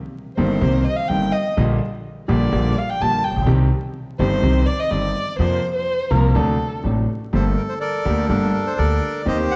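This tango at 125 BPM in 4/4 moves with a rubato feel, melancholic and dramatic in mood. A warm, bowed violin played by a single player takes a solo passage from 0.4 s, singing between A4 and A5 with vibrato and expressive portamento over chords that drift from Cm7 through Gm/Bb, Fsus4 and D7. Beneath it, a clear concert grand piano with deep bass and a smooth, vintage tone supplies accompaniment, while a woody, thumpy upright bass with gut strings is plucked pizzicato. At 7.3 s the harmony lands on Gmadd9 and a reedy, bright bandoneon steps up front with the melody. The sound sits in a moderate recital hall reverb with a dark production and vinyl crackle, and the fragment is cut from a longer piece.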